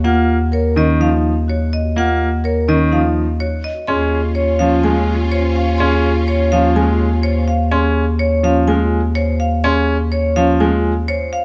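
Meditative yet urgent, this minimalist pattern piece moves at 125 BPM in a straight 4/4, cut from a longer work. A hard-mallet marimba carries the bright, percussive melody high above, while a ringing, metallic vibraphone spins arpeggios in the middle register and a brilliant concert grand piano, sitting up front, supplies the accompaniment. Beneath them a mellow, smooth-topped bass clarinet holds a low Eb as the bass, prominent in the mix. At 3.9 seconds, as the harmony shifts from Ebm9 to Db/Eb, an airy, hollow alto flute adds a soft second line in the background and a lush, bowed string section enters with sustained chords, both falling away at 7.4 seconds. The recording places close, detailed microphones in a recital hall with moderate reverb.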